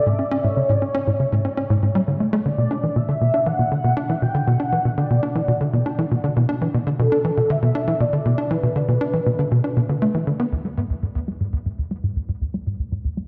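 A tight, punchy sequencer bass riff drives a straight 4/4 pulse at 119 BPM in this mysterious, hypnotic ambient fragment in B minor, its plucky sawtooth tone sitting up front with subtle chorus and tape echo, while a round, horn-like vintage synth lead with a soft attack, warbling vibrato, ensemble chorus and tape echo carries a mellow melody until 10.0 s, moving from a chordless start into B minor and then to E suspended-fourth as a filter sweep moves across the bass at 10.5 s, all of it bathed in a wet echo-chamber reverb.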